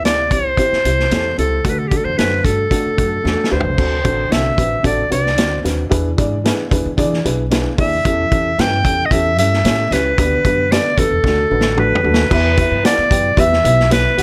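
A straight 4/4 pulse at 112 BPM drives this uplifting, danceable stretch of uptempo 1960s-style soul, cut from a longer piece. A vintage drum kit sits up front with a tight kick, a medium-tuned snare, hi-hat, toms and dark crash cymbals, its rolled-off top giving the groove a warm, studio-room feel, and fills at 3.2 and 11.2 seconds push into new passages. Pizzicato upright bass on gut strings adds a thumpy, woody low end, while a dark upright piano comps in an intimate, boxy tone with its action noise audible. Over them a bright clarinet carries the melody from start to finish, present and jazz-inflected, with a breathy subtone and light vibrato. The harmony moves from C and D through D7, E7, A7/E and G/D before settling on E minor at 12.3 seconds, all set in a light reverb.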